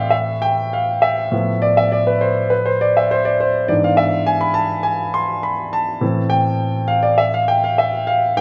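Heard through a moderate recital hall reverb, this brief cut from a longer romantic classical character piece gives a solo grand piano, polished, present and up front, a brooding, stormy mood in A minor at 102 BPM in 4/4 with uneven, rubato beats, ranging from G2 to C6 and moving from Am through Dm13/A and E7/G# before settling back on Am at 6.0 seconds, tuned to A4 = 443 Hz.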